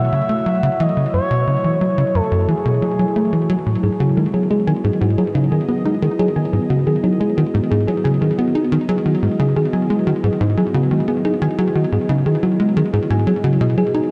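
A straight 4/4 pulse at 89 BPM drives this cosmic, hypnotic stretch of ambient, sequencer-driven space music in G# phrygian, anchored by a tight, punchy sawtooth bass riff sitting up front with lush chorus and delay, while a resonant, evolving pad sustains full-bodied chords moving from F#madd9 to G#m7. A smooth, nasal synth lead with vibrato carries the melody only until 3.5 s, and from 3.8 s a round, tine-like FM pluck resembling a thumb piano spins gentle arpeggios through chorus and delay. A huge, wet reverb and dark production lend the whole cut a deep, floating sense of space.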